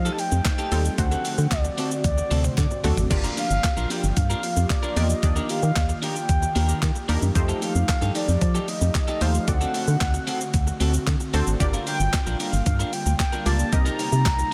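A hollow, dark, organ-like FM bass sits up front with a percussive, decaying bite and a sidechain pump, driving this bittersweet yet energetic dance-pop excerpt in G minor at 113 BPM in a straight 4/4. Close behind, a clean 12-bit drum machine delivers a thumpy kick, a medium-tuned snare, hi-hat, shaker, handclaps, toms and crash, with a fill at 2.0 s. A horn-like synth lead carries the melody with a soft attack, vibrato, chorus and analog delay. Beneath it, a breathy pad holds sustained chords, and a round, detuned analog pluck, entering at 0.7 s, adds background accompaniment, both pumping with the sidechain. A twangy electric guitar at the edge of break-up plays a riff with subtle chorus, while a very quiet group handclap from a live room enters at 0.5 s and returns at 12.1 s. The chords cycle through F9, D7, Gm7, Ebmaj7 and Cm7 under light reverb and digital ambience.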